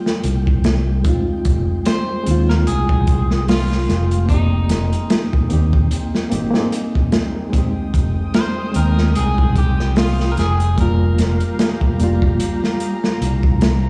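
A reedy electric piano, shimmering with fast and harmonic tremolo under a low-pass filter and tape echo, opens this dark, smoky trip hop excerpt in F dorian at 74 BPM alongside a faint, flickering granular texture, as a crunchy, saturated breakbeat kit with a tight kick and rolled-off top and an up-front fingered electric bass settle into a swung 4/4 groove. From 1.9 s a picked electric guitar at the edge of break-up carries the melody through tape echo and 12-bit sampler grit, while the harmony moves through Gm7, Fm9 and Abmaj9/F. At 7.5 s an intimate chamber string section enters with bowed sul tasto chords and light vibrato, the whole mix sounding as if played on a big system in a bare stone room.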